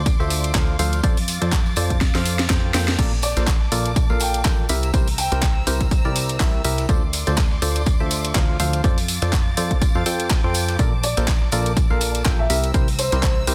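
A feel-good, euphoric piano house excerpt with a swung groove, built on a punchy, tape-warm electronic kick up front and a plucky, funky analog bass, with an overdriven garage kit adding cracking snare, handclaps and crash, while a gritty sampler-style kit and a very quiet tambourine sit far beneath. A hollow, percussive organ stab with chorus and dub echo carries the riff over Dm7, F6, Bbmaj7 and C7 chords, and a background string section with vibrato and portamento holds sustained chords, the organ, bass and strings all pumping under sidechain. A dark, boxy concert grand plays a short melody with dub echo from 3.2 to 5.6 seconds and again from 11.0 seconds, following a drum fill at 2.0 seconds, all in a dense, heavily limited mix with little reverb.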